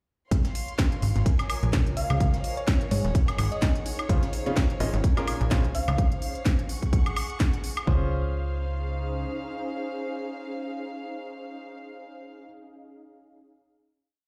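A punchy electronic kick drives four-on-the-floor at 127 BPM in 4/4, swung at 56% on the sixteenths, joined by a house kit of crisp programmed hats, a cracking snare backbeat and high woodblock, with a gritty, very quiet looped breakbeat layered underneath until 5.9 seconds. This euphoric, feel-good piano house piece in Db major rests on a funky, up-front analog bass that plays a syncopated riff with a fast filter pluck, tube saturation and sidechain pumping. A dark, intimate chamber string section holds bowed chords with light vibrato, while an ethereal, airy pad enters at 1.0 seconds with ensemble chorus and slowly shifting chords, both breathing with the sidechain. A round, tine-like synth pluck, treated with chorus and dub echo, plays short answering phrases between 2.0 and 5.9 seconds, and from 4.1 seconds a clear, woody upright piano joins with dotted-rhythm, close-voiced chords through dub echo. 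The drums drop out around 8.0 seconds, and the bass fades by 9.3 seconds, leaving strings, pad and piano to sustain a final Dbmaj7 in a large, reverberant room.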